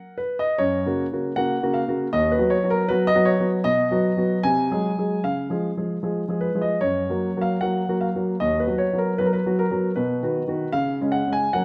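A classical-period piano sonatina in F# major, this short passage cut from a longer piece moves at 77 BPM in 2/4 with a flexible, rubato feel that gives it a playful, graceful character. A solo grand piano carries everything, its tone smooth and vintage, sitting up front in the sound and ranging from D#2 up to G#5. The harmony circles through F#, B over D#, B, G#7 over B#, and C#, then returns to F# at 6.8 seconds to walk a similar path through B over D# and B before landing on C# near the close. A moderate recital hall reverb, with a decay of about 1.4 seconds, surrounds the instrument with a sense of a real concert space. The tuning sits slightly below standard pitch, at A4 = 439 Hz.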